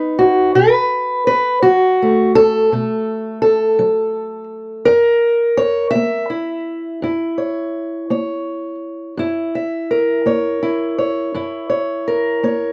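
A lone fingerpicked steel-string parlour guitar opens on B, dark and boxy and placed up front, in a rollicking, gritty slice of acoustic country blues in F# mixolydian at 56 BPM in a straight 12/8. Ranging from F#2 to E5 and tuned to A4 = 442 Hz, it moves from B to B5 and then to F#7 at 4.9 seconds. A short, wet booth ambience surrounds the 12.7-second excerpt.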